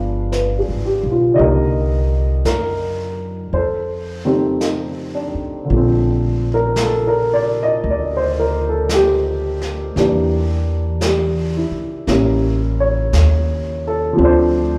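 A dark, mellow baby grand piano sits up front with a slapback echo, voicing tender jazz ballad chords in Bb major at a slow 56 BPM with a gentle swing, moving from G7b9 through Cm7 and F9 before settling on Bbmaj7 at 5.7 seconds. A woody pizzicato upright bass holds the low end close beside it, while a distant, roomy brush kit enters at 0.3 seconds with soft brushed snare and hi-hat touches carrying their own slapback echo. The intimate sound is heard as a live club set through the venue's PA, with light reverb and small room ambience, in this excerpt cut from a longer piece.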